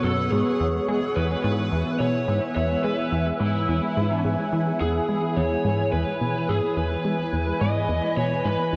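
Awash in a huge, lingering reverb and the worn warble of old cassette tape, with its warbly pitch drift, this short fragment of ambient, sequencer-driven space music feels expansive and luminous. A lush, thick unison pad of detuned sawtooth voices holds sustained chords up front, its chorus adding shimmer over a slow attack and long release. Beneath it, a plucky analog bass plays a punchy, funky riff, its fast-attack filter pluck decaying and its tone evolving under a subtle chorus and analog delay. A lead guitar through a small cranked amp carries the melody, electric, overdriven and a little lo-fi, with analog delay trailing its picked notes. Far in the background, a bubbling sawtooth texture steps randomly through a resonant filter, softened by chorus and its own reverb. All four parts sound together from 0.0 to 8.8 seconds over a straight 4/4 pulse, with an E chord sounding from 0.3 seconds.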